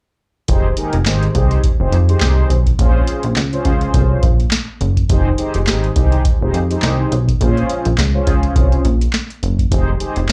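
A punchy, plucky analog bass anchors this slick, late-night slice of early-eighties boogie funk, its fast-attack sawtooth and square-wave tones decaying up front over a booming, dry analog drum machine with a deep kick, crisp snare, metallic hi-hat and handclaps, all in a lightly swung groove. Behind them, mellow synth brass sits lower in the mix, round, detuned and dark with a sub octave, filter sweep, vibrato, chorus and slapback echo, holding sustained chords that alternate between Fm9 and Bbm9. The passage runs from 0.5 to 10.3 seconds, cut from a longer piece and heard as a live gig through a venue's PA.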